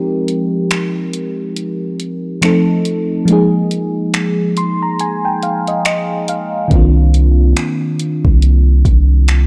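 Contemporary R&B at a slow 70 BPM with a swung sixteenth feel and a sensual, late-night mood, this excerpt opens on a mellow, round FM electric piano with chorus and a noise layer voicing Fm9, F7 and Bb7sus4 over finger snaps, warm hi-hat and a soft kick from a smooth drum kit re-recorded in a small room, entering at 0.3 seconds. The piano adds a fill from 4.1 seconds before a deep, sine-like 808-style bass lands on C2 at 6.7 seconds under a Cm11 chord, all in a dark production with light reverb.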